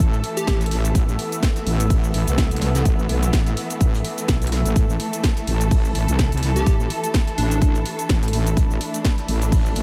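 Bouncy and aggressive, this bass house passage moves in 4/4 with a light swing on the sixteenths, cut from a longer piece. An up-front, punchy electronic kick drives it, layered with a house kit whose cracking snare, hi-hat and cabasa carry a tape-warmed large-room sound. Beneath them, a very quiet vintage brush kit adds natural hi-hat and snare with a rolled-off top. The heavy wobble bass sits forward, a detuned, saturated sawtooth-and-sine tone with chorus and sidechain pumping. Muted, con sordino strings hold veiled, lush chords, while a warbly, nostalgic lo-fi pad floats above, both breathing with the same sidechain pump. A bright, very quiet plucky unison lead appears only briefly, at 0.4 seconds and again from 6.6 to 7.8 seconds, in a light reverb and studio ambience.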